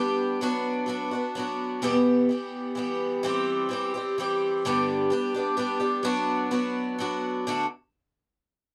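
A picked twelve-string acoustic guitar carries this short rock excerpt alone, its octave-doubled strings giving a shimmering, jangly ring that sits up front in the mix. The tone is bright with a slightly boxy body, and finger squeak can be heard along the strings, adding to the close, dry feel of a 1970s-style studio recording touched by light reverb. Moving in a lilting three-beat metre with a hint of swing, the guitar spans a range from E2 to G4 as it works through a progression of Bm/F#, Em, C/E and G before returning to Bm/F#. At 7.5 seconds the harmony settles onto D as a new section begins, and the guitar stops at 7.7 seconds. The mood is open-road and jangly, and the excerpt is cut from a longer piece.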